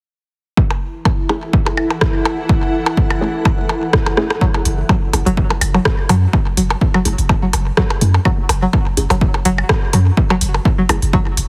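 A punchy, tape-saturated electronic kick drives a swung 4/4 pulse from 0.6 seconds, joined by overdriven percussion blips fed through digital delay and a crisp, layered garage kit of hi-hats and rim clicks set in a large room. This clinical, quirky minimal techno excerpt opens over an F#m7 harmony, where a blurred, full-bodied granular cloud pad and a swarming, warbling drone in the background breathe with sidechain pumping and built-in reverb. A muted, detuned dub chord stab carries chorus, cassette tape grit and delay while a filter sweeps across it throughout. A short drum fill leads into the second section at 4.4 seconds, where the pad and drone stop, the harmony drops away, and a twangy, string-like resonator pluck enters with chorus, phaser, tape echo and its own filter sweep. A deep sine sub bass with a pitch-drop attack arrives at 4.7 seconds, pumping up front beside the kick, and the whole mix has a heavily compressed, radio-like sheen with a light reverb.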